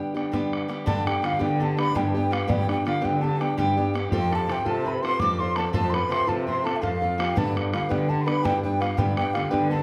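Up front sits a picked acoustic archtop guitar, carrying the accompaniment of this lively Celtic slip jig in 9/8 at 111 BPM, with a straight feel in G mixolydian and tuning at A4 = 444 Hz. Over it, a bright baroque flute leads the melody with an airy, woody straight tone and crisp attack, set off by slapback echo and plate reverb. A second baroque flute, very quiet, adds a pure, tongued line with vibrato, while a thumb-plucked concert harp rings in the background on its own second line. A boomy, open bodhran comes in at 0.2 seconds, sounding distant as if in a large room, and a muted cello joins on bass at 0.9 seconds, bowed con sordino by one player with a dark, veiled tone, soft attack, vibrato and portamento. The harmony moves from G to F and back to G in this bright excerpt cut from a longer piece, all sitting in a moderate studio reverb.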